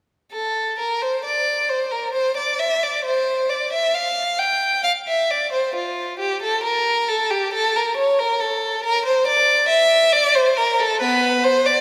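A wet church reverb with a 3.0-second decay surrounds a single bowed violin placed up front, its tone rich and focused with vibrato. In this serene, radiant passage from a longer baroque-style suite movement in 3/4, the unaccompanied violin plays alone from 0.3 to 11.8 seconds, ranging from B3 to G5 with a free, rubato feel.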